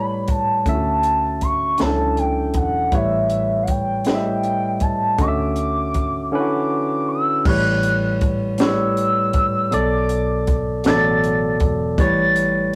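Tender and intimate, this slow six-eight R&B fragment floats a mellow, warbling portamento lead with chorus over a bright, lightly overdriven tine electric piano, a round, foam-muted vintage bass and a compact cocktail drum kit with a punchy kick and high-tuned snare entering at 0.3 seconds, all caught in a rough rehearsal-room recording with a small room's moderate reverb.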